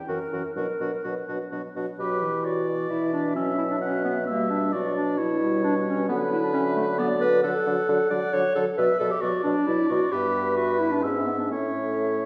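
The clarinet sits up front in this quick, cheerful classical-period movement for wind quintet, carrying a warm accompaniment line in classical style at 132 BPM in a rubato 3/4. The flute, hollow and pure with vibrato and tongued notes, takes the melody from 0.0 s but stays in the background. The oboe, close-miked with light vibrato, weaves a second line, while the French horn adds a dark, soft-attacked, distant accompaniment. The mellow bassoon anchors the bass with a smooth top. The music begins in B minor and brightens into D major at 7.4 s, and the spirited passage is cut from a longer piece at 12.3 s, heard from further back in a wet recital hall.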